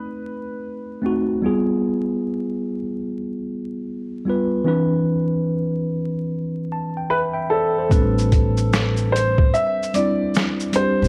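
A slow, swung 74 BPM pulse in 4/4 carries this hazy, nostalgic lo-fi hip hop fragment in A minor, cut from a longer piece. A worn, slightly out-of-tune tine electric piano holds the accompaniment throughout, clean and direct under a low-pass filter, moving through B7b9, G7b9 and Cmaj9 before settling on Am11. A woody upright piano with long sustain sings the melody up front, heard briefly at the start and returning at 7.1 seconds, its natural tone also softened by a low-pass filter. At 7.9 seconds a gritty, compressed, pitched-down boom bap sampler-style kit arrives with a thumpy kick, medium-tuned snare, finger snaps, hi-hat and shaker, joined by a dark pizzicato upright bass with gut strings. A moderate spring reverb and a bed of vinyl crackle give the whole a warm, dusty glow.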